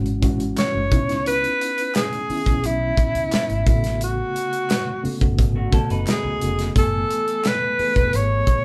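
A live band shares one room in this recording, its wet studio ambience lending a lush 1970s-style soul feel that is smooth and bittersweet, cut from a longer piece. A reedy electric piano with fast tremolo, heard through its built-in speakers, lays down chords that move from E69 to C#m9, A69 and F#m11, under a dark, foam-muted fingered bass with a round, punchy tone. An acoustic drum kit sits up front with a tight kick, a medium-tuned snare and hi-hat, while very quiet, crisp group handclaps join at 0.6 s. From that same moment a breathy tenor saxophone carries the jazz-style solo melody, intimate and whispered, with vibrato, scooped notes and a soft attack. Near 5.6 s a twangy, slightly broken-up electric guitar from a small old amp adds a brief picked riff before falling away at 6.7 s.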